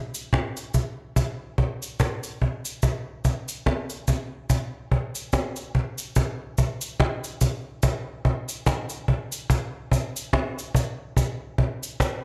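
A dry, close recording with a 1970s studio feel carries this hypnotic, laid-back reggae groove at 72 BPM in 4/4 with a swung sixteenth-note lilt, where an up-front woody cajon with faint snares and a live-room presence drives the rhythm from 0.2 seconds while a distant cabasa, blended with egg shaker and group handclap in a large room, sits far back from 0.1 seconds through to 12.2 seconds, shifting into a second section at 6.2 seconds in this short cut from a longer piece.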